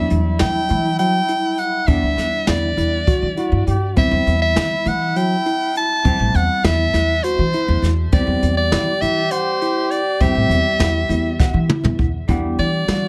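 Tense and brooding, this short progressive instrumental excerpt moves in a straight 7/8 at 202 BPM (eighths), tuned to A4 = 436 Hz, with a bright, up-front soprano saxophone carrying the melody through tape echo over a mellow, scooped-note trombone second line, a dark hollow-body jazz guitar in the background, worn, slightly out-of-tune electric piano arpeggios with light overdrive, a woody pizzicato upright bass, and a brushed drum kit with a boomy kick that plays a fill from 11.4 to 12.3 seconds, all in light reverb as the chords move from Em7 to C and back to Em7.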